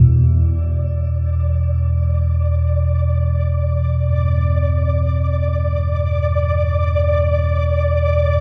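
A dreamy, reverb-soaked haze opens this cavernous dark ambient drone fragment in free time and E minor over an Em7 chord, where an ominous, wave-folded synth drone rumbles up front from E2 to B2 with analog chorus and a filter sweep, a grainy, flickering granular texture glints at D5 from 0.6 seconds through shimmer reverb, and a mellow bronze singing bowl rings softly in the background at G2 from 4.1 seconds, its arpeggios trailing through analog delay.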